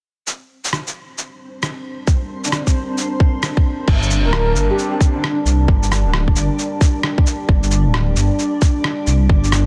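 A future garage excerpt at 133 BPM in G minor, nocturnal and rainy in mood, with a 16th-note swing under a dense, heavily limited modern master. A lo-fi sampler-style drum kit opens at 0.3 seconds with crash cymbal, rim click and shaker, pitched down, muffled and overdriven with 12-bit grit. A reversed, granular texture joins at 1.5 seconds, swelling dreamily in the background, and from 1.9 seconds a deep, moody pad fades in on a G minor chord, mellow and chorused with sidechain pumping. A tight, tape-toned electronic kick sits up front from 2.1 seconds, and from 2.4 seconds a breathy, flute-like synth lead with vibrato and tape echo carries the melody between D4 and Bb4 until 6.2 seconds. At 3.9 seconds the second section arrives with a dark, detuned saw bass, rumbling and beating in the low register with sidechain pumping. The whole sits in a digital ambience, its fragment cut from a longer piece.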